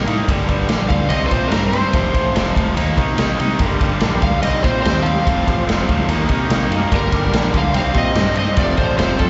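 A biting, double-tracked overdriven guitar sits up front with a picked riff and slapback echo, while an overdriven slide guitar carries the melody in this gritty, brooding blues rock and southern rock power-trio piece at 144 BPM in G minor. A growly fuzz bass and a raw garage drum kit of punchy kick, snare and ride, saturated and rolled-off on top, drive a Gm, C5, F, Eb5 progression that turns to Gm, Cm, F, Eb; a very quiet overdriven tonewheel organ with key click and a slow rotary speaker adds thick sustained chords from 3.6 s. The band sounds like a live gig heard through the venue's PA, with small room ambience, recital hall reverb and a muffled high end.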